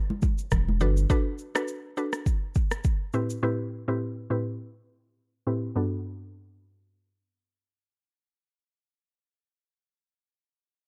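A lightly swung afrobeats groove at 103 BPM in G major opens with damped, high-tuned congas, a very quiet electronic downlifter and a produced drum kit of deep kick, rim click and shaker, while a thick, saturated sub bass adds brief weight before the drums stop at 3.4 seconds. A woody, round FM synth pluck with a noise layer, chorus and a filter sweep carries a rootless Gmaj7, then Am7 and Gmaj7 again, from 0.8 to 9.2 seconds, giving this breezy, sunny fragment of a longer piece a bright lift. The dry, dark production keeps the drums, bass and pluck up front.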